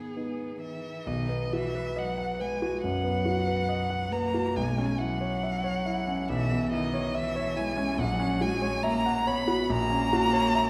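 Classical slow romantic movement for piano trio in B major at 69 BPM, played with a rubato feel and a solemn, melancholic mood in this fragment cut from a longer piece. An up-front violin carries the melody with vibrato, portamento and a smooth top, while a rich, focused cello sings a close second line with its own vibrato. An intimate, warm concert grand supplies deep-bass accompaniment with audible action noise, all set in a wet recital hall as the harmony moves from G#m to B at 1.1 seconds and on through C#m7/B and F#7/A#.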